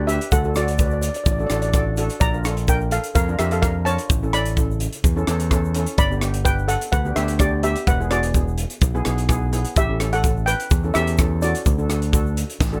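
Sunny and carefree, this calypso excerpt moves at 127 BPM in a straight 4/4 feel in D major, tuned slightly low to A4 = 438 Hz. A lead steel pan carries the melody up front, its metallic, shimmering tone struck with medium rubber sticks and ranging from F#4 to B5, while cello pans fill in the accompaniment lower down with an airy sheen. A bright, direct fingered electric bass sits prominently beneath, and a crisp fusion drum kit with a high-tuned snare, tight kick, rim clicks and hi-hat brings a gritty, saturated punch from a small, pumping room. A grainy egg shaker ticks along close but in the background. The chords travel from D through Bb, Aadd9, G, E7 and A7 before landing back on D at 11.7 seconds, and a drum fill at 12.6 seconds closes the passage in a dry, intimate space with little reverb.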